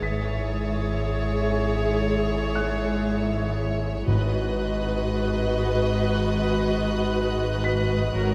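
Dark, sul tasto violins carry this uneasy suspense-score cut with an intimate, close melody over a distant, floating second violin line, shadowy violas, a background cello section and a woody double bass section, while a thick, saturated sub bass drone sits underneath. Behind the strings, a glass harmonica holds ethereal, beating chords, a felt-muted upright piano adds mellow texture, and a high, rich violin layer adds intimate, soft texture at the top. Soft-mallet timpani with round calf heads sound between 4.1 and 5.6 seconds as the harmony shifts, all set in a moderate concert hall reverb for an ominous, slow-moving atmosphere.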